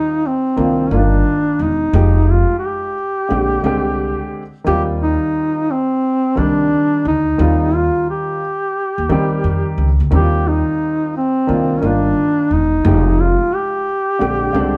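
Smooth and warm, this short cut of swung jazz-hop at 88 BPM in Eb major sets a mellow, vibrato-laced duduk melody with a punchy folk-style lilt up front over dark, vintage grand piano chords with short sustain moving through Eb69, Cm11, Fm9 and Bb13, while a woody, growly pizzicato upright bass on steel strings enters at 0.6 seconds, the trio playing live together in a large studio room with moderate reverb.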